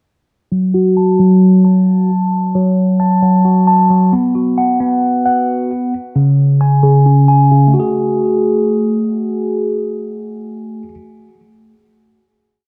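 A mellow, clean tine electric piano plays alone from 0.5 seconds, sitting up front with a phaser, low-pass filter, digital delay and a filter sweep as it loops an arpeggio in threes over F#m, B5 and C#5 in this menacing, melancholic half-time trap piece at 133 BPM in F# minor, before settling on a final F#madd9 chord at 7.7 seconds and ending by 10.9 seconds in a light reverb.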